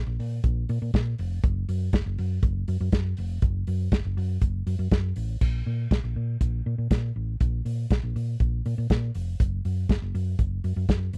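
A fingered electric bass opens this disco excerpt at 0.0 s, its hollow-body, short-scale tone round and amped as it moves between F1 and Bb2 up front in the mix. A soul drum kit joins at 0.2 s with a punchy kick, a medium-tuned snare, hi-hat and crash cymbal, its smooth, rolled-off top and dark cymbals giving it the feel of a small room. The mood is sultry yet driving, carried by a straight four-beat pulse. At 5.4 s the music moves into a new section, with both parts carrying on together to the end. The sound is dry and close, much like a 1970s studio recording, with little reverb around the two instruments.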